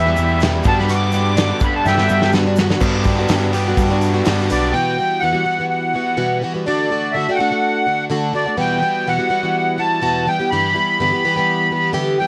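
Heard through worn, warbling old cassette tape with light reverb, this reflective, wistful folk rock and heartland rock excerpt opens with a sweet, reedy accordion solo over a shimmering, octave-doubled twelve-string acoustic guitar, biting double-tracked overdriven electric guitar, deep round dub bass, a grainy tube shaker tucked in the background and a loose small-room indie drum kit that plays a fill from 1.9 to 2.8 seconds. The shaker and drums stop at 4.6 seconds and the guitar riff and bass at 4.7 seconds, leaving the airy accordion and bright twelve-string to carry on together.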